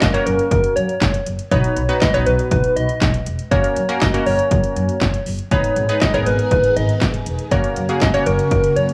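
A dry, gritty recording with a small-room feel carries this nostalgic, upbeat synth-pop cut at 120 BPM in straight 4/4, moving through F#, B and G#m. Up-front analog 80s electronic pad drums set a punchy kick, gated snare, metallic hi-hats and handclaps under a woody pizzicato upright bass. A funky, detuned sawtooth polysynth comp with a filter sweep supports a round, gentle FM lead melody that is keys-like and warbling with chorus, tremolo and tape echo, and a swirling phased string machine joins at 5.5 seconds with slow-attack sustained chords.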